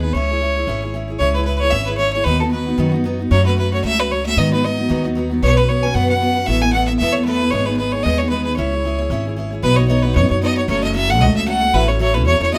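A rollicking, bright Celtic reel cut from a longer piece, racing along at 228 BPM in C# minor with a lightly swung feel. An intense, clear fiddle carries the melody with light vibrato up front, while a picked steel-string jumbo guitar with fresh strings gives full-bodied accompaniment, finger squeak audible, over a woody, thumpy pizzicato upright bass with dark gut strings. Moderate studio reverb surrounds the trio as the harmony moves from C#m through F#m and G#m before a new section opens on Badd9 at 9.6 seconds.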